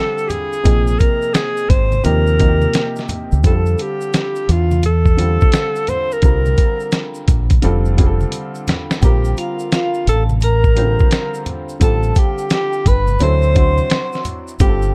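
Cool and nocturnal, this jazz-hop cut from a longer hip hop piece moves at an unhurried 86 BPM in 4/4, with a swung sixteenth-note feel. A breathy alto saxophone leads the melody up front in a jazz style, its subtone playing marked by vibrato, scooped notes and a smooth top. Beneath it, a worn, woody upright piano sounds slightly detuned as it carries the harmony through chords such as Dm7, Ebadd9, Bbmaj7 and G9sus4 before landing on D7. The muffled, compressed sampler-style drum kit sits prominently, with a thumpy kick, fat snare and hi-hat, alongside a round, punchy fingered electric bass that stays dark and direct. Bright, saturated maracas and congas played with hard hands sit in the background, and after a drum fill from 8.3 to 9.0 seconds, a ringing, metallic vibraphone with hard mallets and fast motor vibrato adds an airy second line. The small room ambience and warm, dark production give the whole track an intimate late-night glow.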